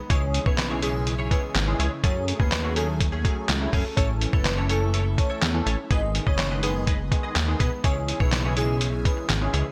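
Bright, 1980s-style digital production with light reverb and a sense of ambience frames this driving, energetic dance-pop excerpt in C# minor, moving at 124 BPM in a straight 4/4. Up front, a lo-fi sampler-style drum kit, compressed, pitched down and muffled, delivers a thumpy kick, medium-tuned snare, hi-hat and handclaps with the character of a small room. Beside it sits a dark, glossy synth bass built from pulse, sawtooth and sine waves, with a filter sweep and sidechain pumping. A barky tine electric piano, played through a combo amp, carries the accompaniment, while a twangy, scooped clean guitar, recorded direct, picks a riff in the background. A breathy pad with a slow attack and long release holds sustained chords through a phaser, and a dreamy lead of sine and square waves with a sub octave and vibrato sings the melody through a digital delay. The harmony moves from C#m through F#madd9, A and G#m before returning to C#m at 7.8 seconds.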